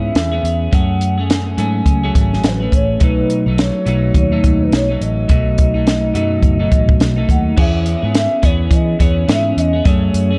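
Nostalgic and hazy, this short indie pop and bedroom pop fragment is cut from a longer piece and moves at 105 BPM in 4/4 with a 16th-note swing, in E major tuned slightly sharp to A4 = 445 Hz. A hollow, woody synth lead with a soft attack carries the melody in sustained tones, draped in lush chorus, tape echo and vibrato. Sitting up front beneath it, a bright, twangy twelve-string electric guitar plays clean, compressed accompaniment with subtle chorus and a vibrato effect. A vintage foam-muted electric bass adds a round, amped low end, while a compact cocktail drum kit enters at 0.2 s with a punchy kick, high-tuned snare, hi-hat and dark crash cymbal, all dry and close. The harmony moves from E6 to F#madd9 and a long B7, then returns to E6 at 7.6 s, all set in light reverb and studio ambience with a dark, warm production.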